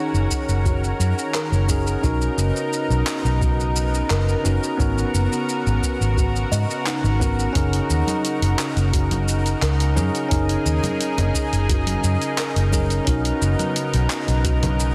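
Blissful and sunny, this sunset chillout excerpt moves at an easy 87 BPM in F# major, cycling through lush chords such as F#6, Bmaj9 and G#m11. A bell-like tine electric piano carries the accompaniment with a clean, direct tone, shaped by a low-pass filter sweep and delay, while a thick, detuned unison pad with chorus and a soft attack sustains the harmony. Up front, a vintage muted fingered electric bass sounds dark, round and punchy, anchored by a deep analog electronic kick. A tape-warm deep house kit adds handclaps, hi-hat and shaker, and a very quiet kalimba plucks woody, hollow arpeggios above. At 8.1 seconds, ringing congas join in the background, all set in a lush hall reverb within a dense, heavily limited modern master.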